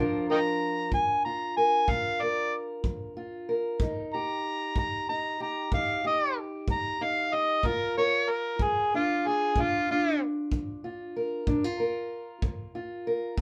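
A dark, woody fingerpicked parlour guitar with a boxy, old-strings tone opens this rollicking, soulful acoustic country blues excerpt at 63 BPM in a straight 12/8 in Bb mixolydian, joined at 0.3 seconds by an up-front, gritty amplified harmonica playing a jazz-style solo full of vibrato, scooped notes and tongue slaps until 10.2 seconds, while a distant, roomy kick drum played with brushes adds a punchy pulse from 0.9 seconds over a Bb to Eb and back to Bb progression in light reverb.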